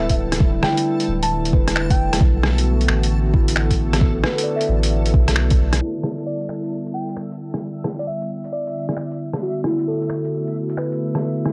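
A bell-like FM electric piano melody opens over muted, felt-like synth keys, a warbly tape-like pad, a round dub sub bass and a reversed, dreamy texture in the background. Together they set a wistful, rainy future garage mood with a swung feel and a dry, gritty sound laced with vinyl crackle. A soft electronic kick and a muffled, overdriven lo-fi sampler kit of finger snaps, hi-hat and rim click come in at 0.1 seconds, with the keys, pad and sub bass pumping. After an accent at 5.4 seconds the kick and sub bass drop away, a filter sweep moves over the pad, and the sparkling electric piano returns at 6.3 seconds in this cut from a longer piece.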